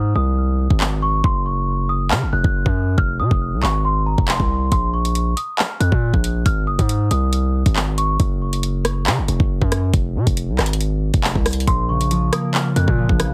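A delicate, bell-like celesta filtered and trailed by delay opens this dark, menacing drill cut in Bb minor at 138 BPM in half-time over a heavy, distorted 808-style bass, with a knocking, up-front drum kit of kick, metallic hi-hats, handclaps and rim clicks arriving at 0.7 seconds, the hats dropping out briefly during the opening break, and a bright, ringing, thumb-plucked concert harp joining the returning celesta at 11.7 seconds, all under a heavily compressed, dry, radio-like sheen as the chords cycle through Ab, Gb5, Fm and Bbm.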